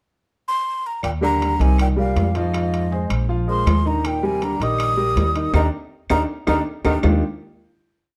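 Over a straight 4/4 pulse at 160 BPM, this short, danceable and sophisticated Afro-Cuban jazz piece in Eb major lays ringing metal-shell timbales and woody claves tapping a two-bar time line in the background under a thumpy pizzicato upright bass tumbao that anticipates the chords and a present grand piano montuno in octaves, while an up-front, breathy silver concert flute with vibrato and a crisp attack carries a motif-based melody from 0.5 s, shadowed by a distant, roomy tenor saxophone harmony line mostly in sixths with scooped notes, before a band accent and drum fill lead to the final Ebmaj9 chord at 7.0 s in a dark, moderately reverberant mix.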